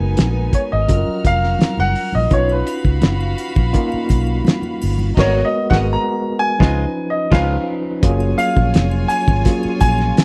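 A warm baby grand piano carries the melody up front in this romantic excerpt of lush 1970s-style soul, entering at 0.5 seconds and taking a solo through the opening 8.0 seconds. Beneath it, a cloth-damped drum kit thuds with a fat snare, tight kick and dark, muffled cymbals, its saturated, gritty tone rolled off at the top, while a vintage muted bass played with the fingers sits round and dark beside it. A worn, slightly out-of-tune tine electric piano, lightly overdriven through its built-in speakers, fills in the accompaniment, and a rich studio violin section adds a soft-attacked, intimate second line with light vibrato. Bright congas play quietly until 5.2 seconds, a shimmering triangle glints in the background from 2.3 seconds, and a clean, compressed semi-hollow guitar slips in a brief riff from 6.6 to 7.6 seconds during a band accent. The harmony drifts through lush extended chords such as G#m9, Bmaj9#11 and C#9 before settling on F#maj9, all captured in a dry, close small-room sound.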